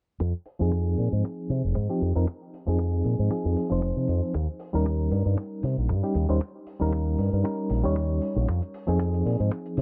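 This nu-disco excerpt, cut from a longer piece, feels sleek and groovy, with a light swing on the sixteenths. A fingered electric bass with an envelope filter sits up front, its warm, direct tone carrying a filter sweep that runs from 0.2 to 9.8 seconds. A dry, tight acoustic kick drum and a hi-hat tucked into the background hold the beat, with high-pass filtering on the kick, snare and room. A reedy, clean electric piano plays accompaniment up front from 0.6 seconds, shimmering with harmonic tremolo, sidechain pumping and tape echo. The harmony moves from Fm7 to Eb7 and back to Fm7, and the mix is dry with little reverb and a low-pass filter softening the top.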